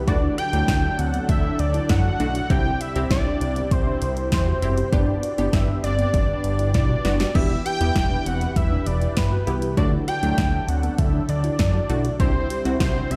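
Upbeat and nostalgic, this synth-pop excerpt moves at 99 BPM in a straight 4/4, with a fat, evolving analog lead carrying the melody over a lush, warbling unison pad and a soft, round pluck arpeggiating in the background, while a thick sawtooth bass, a punchy, funky polysynth comp and an up-front deep house drum kit with a deep kick and a drum fill at 6.7 seconds drive chords from D through C, Em and back, all heard as if played on a big sound system in a bare stone room.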